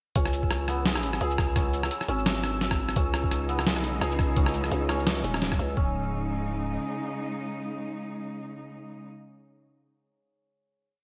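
Half-time drum and bass with a tense, spacious mood, where a shimmering hammered santur repeats a 16-step arpeggio through digital delay over a growling, buzzy 808-style bass, a gritty, pitched-down boom bap kit of shaker, closed hat, rim and snare with gated reverb, a thumpy electronic kick and a faint pulsing gated texture holding a high note, before the drop gives way at 5.8 seconds to a final chord carried by the santur and a veiled, muted cello section that entered at 3.0 seconds with sidechain pumping, all in a bright 1980s-style digital production.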